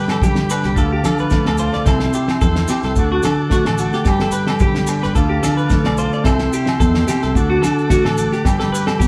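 Two clean electric guitars, one bright, twangy and compressed picking accompaniment and the other dark and finger-played in arpeggios, open this carefree, joyful highlife excerpt alongside a buzzy vintage combo organ holding chords with heavy vibrato. At a straight 109 BPM in 4/4, a damped 70s drum kit with a fat snare and tight kick arrives almost at once, along with a warm fingered electric bass, soft thick-skinned congas, grainy maracas and ringing agogo bells set in the background. A drum fill at 1.2 seconds comes as the band cycles through G, Dm, C and D, all playing live together in a moderate stone room.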